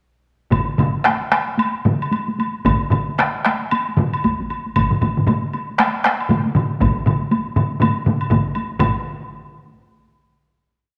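Powerful and ceremonial, this complete Japanese traditional taiko piece in 4/4 drives from 112 to 127 BPM with a swung sixteenth-note feel, as four taiko ensemble parts, one close and dry, one compressed, saturated and up front, one in a small room and one in a live room, play hard- and heavy-stick repeating patterns and taiko phrases alongside a woody woodblock pattern, all speeding up through a wet echo-chamber reverb until a final hit at 8.8 seconds.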